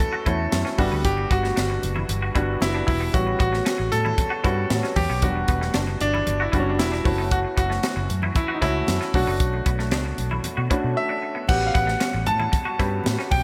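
A tight funk drum kit with a high-tuned snare and gated reverb drives a straight 4/4 at 115 BPM alongside very quiet low-tuned congas, with a dark, round, foam-muted fingered electric bass entering at 0.3 s, giving this polished 1980s jazz-funk pop cut an urban, nocturnal mood. Up front, a brilliant, intimate grand piano with audible action noise carries the melody over a deep concert grand accompaniment treated with lush chorus, while a twangy, clean electric guitar riff with ensemble chorus sits in the background and a mellow woodwind section holds smooth, vibrato-laden chords. The harmony moves through F#m7, Em9, A13 and Bm7, with a brief break at 11.0 s before A13 returns at 11.5 s, all set in a moderate hall reverb with a glossy digital sheen.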